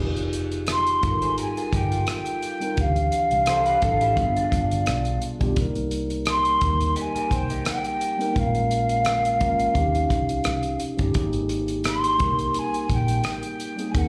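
A mellow tine electric piano with slapback echo and a round, foam-muted fingered bass open this cut from a longer 1970s-style soul piece in F minor, soon joined by a dry, tight-kicked drum kit of hi-hat, kick and rim click at a lightly swung 86 BPM. A breathy, hollow jazz flute carries the melody up front from 0.7 s, while a slightly broken-up electric guitar through a small old amp plays a lo-fi riff with lush chorus and slapback echo in the background from 1.2 s to 8.3 s. Chords such as Fm9, G7b9, Bbm7 and Abmaj9 give a cinematic, bittersweet mood, heard as a live gig through the venue's PA with club reverb and lossy compression artefacts.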